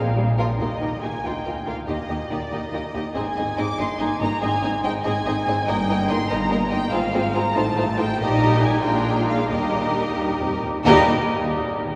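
A quick, cheerful classical-period movement for string orchestra in 6/8 and Eb major, cut from a longer piece, moving at roughly 86-97 BPM in dotted quarters before slowing down from 7.6 to 10.9 seconds toward a cadence back on Eb. Bowed violins carry the lively melody high above a second violin line that enters at 0.4 seconds, their tone intense with light vibrato and a smooth top, while expressive violas, focused cellos set in the background, and woody double basses supply accompaniment and bass from the start. The second violins, violas and cellos sound lush and distant, and the whole ensemble is bathed in a wet cathedral reverb with a 5.3-second tail that places it in a church or concert hall.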